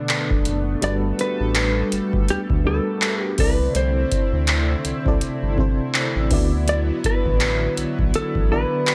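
A booming analog drum machine sits up front in this short, late-night contemporary R&B passage, its deep kick, metallic hats and handclaps given extra weight by being re-recorded in a large room, and the kick drops out briefly between 0.8 and 1.6 seconds. Moving at 82 BPM in 4/4 with a lazy swing on the sixteenths, the groove rests on a round, dark analog bass that blends sawtooth, sine and triangle tones with a detuned, sustained body. A full-bodied FM electric piano with tremolo supplies the accompaniment, its fast, decaying notes carrying a noise layer, while a shimmering, retro pulse-width pad holds long, chorused chords underneath with a slow attack and bright edge. Over this, a clean, fingered electric guitar sings a compressed, mellow melody through tape echo, lending the longing mood its voice. The chords drift from Bm7 to Gmaj9, then C69 and D69, all wrapped in a digital ambience that gives the cut-out fragment a soft, nocturnal glow.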